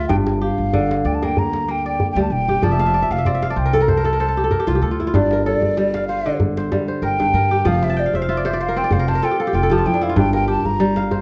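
A lightly swung 4/4 groove at 95 BPM drives this hypnotic, reflective West African string and xylophone piece in G dorian, cut from a longer work, with a tight, cracking djembe played with soft hands sitting in the background and a thumpy, woody pizzicato upright bass on gut strings underneath. Up front, a crisp, ringing, fingerpicked kora spins arpeggios and adds fills from 2.6 and 7.9 seconds, while a breathy, hollow wooden flute carries the tongued, vibrato-laden melody before taking a solo at 5.1 seconds as the chords move between Gm and F. The dark production is set in a moderate recital hall reverb.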